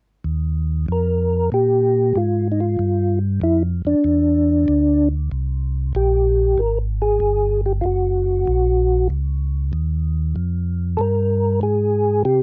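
Jazz in a bluesy, swinging mood at 95 BPM in 4/4 with a strong eighth-note swing, this short piece cut from a longer work pairs two tonewheel organs: a round, dark organ carrying the bass line from 0.2 seconds with audible key click through a slow rotary speaker, and a soft, flute-like percussive organ taking the melody from 0.9 seconds, its second-harmonic percussion and chorus vibrato also turning through a slow rotary speaker. Both sit up front in a dry, close 1970s-style studio sound with light reverb, moving through chords from Ebsus24 to G5, C5, Gb and finally Fm.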